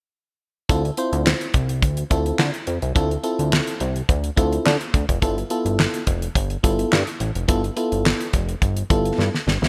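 A bright, 1980s-style digital production with light studio reverb frames this funky, late-night cut of early-eighties boogie funk in D dorian at 106 BPM, tuned to A4 = 438 Hz. A damped 70s drum kit sits up front with a tight kick, fat snare, hi-hat and handclaps under gated reverb, while a thick, nasal analog bass with a detuned sawtooth tone and a fast-attack filter pluck holds the low end. A glassy, mellow FM electric piano with a bell-like attack and chorus plays the accompaniment as the harmony moves from Dm7 to G13 at 5.2 seconds, and the drums close with a fill at 9.2 seconds.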